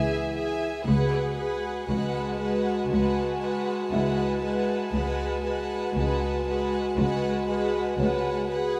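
Ominous and eerie, this slow 59 BPM suspense film score cue moves from C#m to G#m7/C# as a soft-attack, sul tasto chamber violin section carries the melody over a second violin line and a rich viola accompaniment, while a tight French horn section holds warm sustained chords, bowed cello and dark double bass anchor a low C#2, a very quiet, mellow grand piano adds texture with audible action noise, and a further violin texture enters at 0.9 s, all set in a moderate scoring stage reverb.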